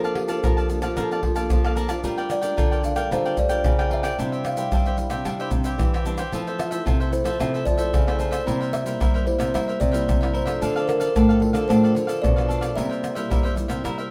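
A woody, ringing kalimba carries the melody in this lively, playful samba and choro passage, its thumb-plucked tone smooth and dark over a solid board. Crisp, bright picked cavaquinho and a small, fingerpicked nylon-string guitar fill in the harmony, moving from Bbmaj7/F through Gm7, Cadd9 and Fmaj7 to C7 and Dm, while a second nylon-string guitar plays a thumb-plucked, classical bass line with audible finger squeak. Up front, close and hit with hard hands, the tube shaker, pandeiro, tamborim and deep surdo drive the groove of this cut from a longer piece, with the band playing live in one room under moderate studio reverb.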